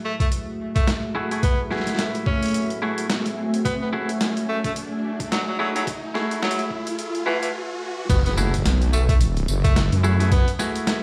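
Glitch hop at 108 BPM in F# minor, this funky, gritty passage is cut from a longer piece and swings its sixteenths over an opening F#m9 chord. An edgy tenor saxophone carries the jazz-style solo melody from the start, its scooped, vibrato-laden notes punchy and forceful, trailed by dub echo. A moody, detuned analog pad with chorus and 12-bit sampler grit holds sustained chords beneath it, joined by a blurred granular cloud pad in the background. Both pads pump against the sidechain as a filter sweep and an electronic riser build toward a stop at 7.5 seconds. Pitched-down, compressed boom bap drums with a medium-tuned snare, tambourine and crash sit in a small room alongside an up-front, thumpy electronic kick. A bright, clean semi-hollow guitar cuts in with picked stabs and dub echo from 1.1 seconds. At the drop at 8.1 seconds a heavy, saturated wobble bass with chorus and overdrive surges in beneath an impact, and the whole mix is heard through a stone room's reverb as if played on a big sound system.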